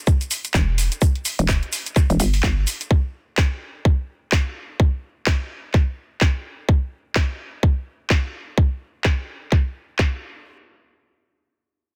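Bass house with a bouncy, swaggering character and a swung sixteenth-note feel, taken from a longer piece. A tight, layered electronic kick drum sits up front and drives the groove, joined by a garage drum kit whose handclaps and mellow hi-hats are softened by low-pass filtering, giving the kit a muffled, small-room character. Near the start, a grainy, bright tube shaker sits close and dry in the background, dropping out at 2.9 seconds. A hollow, knocking FM bass with a fast attack and a decaying tail punches in low in the register, pumping through sidechain compression until 2.7 seconds. The sound is dry and up front, with a dense, heavily limited modern master, and a brief new section arrives at 10.5 seconds.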